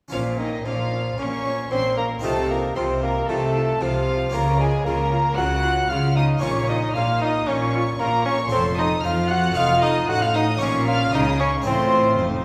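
A punchy, up-front solo bassoon carries the melody in this stormy, dramatic baroque-style concerto movement in Bb minor at 114 BPM, joined above by a violin section with gut-string sheen and light vibrato that shares the melody. A darker second violin line, a distant viola section and a close-miked, plucked harpsichord with two sets of strings fill the middle, while nasal cellos and a dark double bass section anchor the harmony moving from Bbm through F7 and back. Cut from a longer piece, the 12-second passage sits in a wet recital-hall reverb that gives the period-style strings a churchlike bloom.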